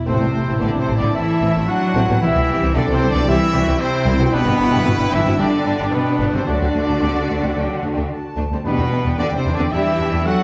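An up-front double bass section anchors this determined, adventurous stretch of heroic film score at 112 BPM in A dorian, joined by lush cellos on the bass line, while violas supply a rich, smooth-topped accompaniment from the very first moment. Intense, vibrato-laden violins carry the melody in the background, with a second violin section, an airy flute group, a close-miked clarinet and a present cor anglais weaving supporting lines; mellow French horns hold very quiet sustained chords and a distant, roomy trumpet section adds stabs. The harmony moves from Am through C, G and D to Em7, all set in moderate scoring-stage reverb with a dark production.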